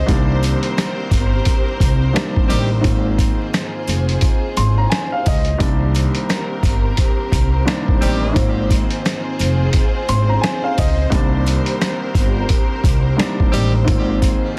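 Boom-bap hip hop at 87 BPM in C minor with a swung 16th-note feel, this gritty, reflective excerpt sets a dark, boxy upright piano with cassette-tape coloring and a lush bowed string section over a woody, growly pizzicato upright bass and an up-front, compressed sampler-style drum kit with a thumpy kick, while jingly sleigh bells sit in the background, a jazz-style horn section with octave doubling and digital delay adds short stabs at 2.5, 8.0 and 13.5 seconds, and the harmony alternates between Cm7 and Ab6 under light reverb, vinyl crackle and a dense, heavily limited master.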